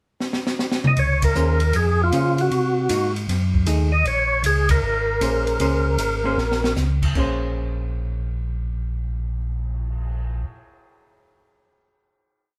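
Swung eighths in 4/4 drive this short, bluesy, late-night soul jazz organ trio piece: an acoustic drum kit with dark cymbals, a high-tuned snare and a boomy kick opens with a fill at 0.2 seconds, a round, clean organ walking bass with chorus vibrato and slow rotary speaker enters at 1.0 seconds, and a fat, lightly overdriven, percussive organ plays motif-based song phrases through a slow rotary speaker until 6.7 seconds, while a fingered hollow-body electric guitar adds syncopated three- and four-note comping, the band playing live together in a moderate stone room before settling on a final chord.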